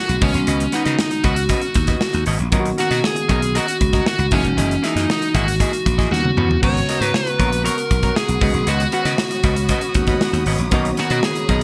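Polished 1980s jazz-funk pop at 117 BPM in a glossy, urban mood, this excerpt sets a dark, overdriven lead guitar melody up front over a punchy slap bass, a bright-cymbaled studio drum kit, a mellow, slightly out-of-tune tine electric piano with subtle chorus and a clean, picked semi-hollow guitar riff, moving through rich chords like G#m11, Bmaj9 and F#13 until a drum fill at 6.1 seconds ushers in a background string section with vibrato and portamento at 6.6 seconds, all within bright digital production and light small-room reverb.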